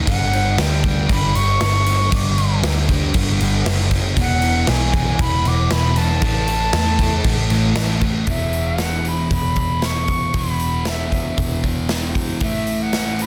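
Dreamy and wistful, this short cut from a longer rock piece blends shoegaze and dream pop at 117 BPM in a straight 4/4. A double-tracked fuzz guitar drives the riff up front, its compressed, distorted tone given a subtle chorus, while a vintage muted picked electric bass sits beneath with a dark, round, foam-muted sound. A big acoustic rock drum kit punches through with a punchy kick, medium-tuned snare, hi-hat and bright crash cymbals in a big-room sound. Floating above, a reedy silver concert flute plays the melody with a pure straight tone and tongued notes, set distant and touched by slapback echo. The harmony moves through G5, E and A5 before the passage shifts at 8.3 seconds onto E5 and then back to A5 at 12.4 seconds. Light reverb and small room ambience surround a dense, heavily limited modern master.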